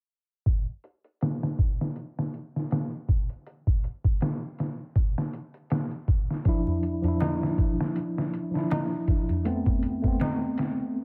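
Trip hop at 80 BPM in 4/4 with a lazy 16th-note swing, melancholic and cinematic in mood, cut from a longer piece. A sampler-style drum kit opens at 0.5 s, compressed and pitched down, its thumpy kick, medium-tuned snare and hi-hat all muffled by low-pass filtering yet sitting up front. At 6.5 s a mellow tine electric piano enters, clean and played through its built-in speakers, colored by harmonic tremolo and tape echo as it moves from Dmadd9 to Amadd9. A high-tuned acoustic tabla joins at 6.7 s, its short-ringing strokes compressed and saturated and placed lower in the balance. A light reverb gives the whole a modest sense of space.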